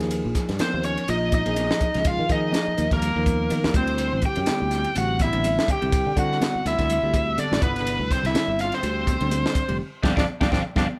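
A biting, overdriven lead guitar carries the melody up front from 0.6 seconds, its tone set in plate reverb, while a raspy, growling trombone with vibrato and scooped notes plays a jazzy second line beneath it in this slick, bright electric jazz fusion excerpt. A sustaining fretless bass with a growly, chorused tone and a clean, bell-like tine electric piano in the background move through suspended chords from Ebsus4 to D9sus4 to G7sus4, over a crisp drum kit with a punchy kick and high-tuned snare plus very quiet, ringing congas, all in a light swung feel. The band hits an accent from 9.8 seconds, and a drum fill arrives at 10.8 seconds.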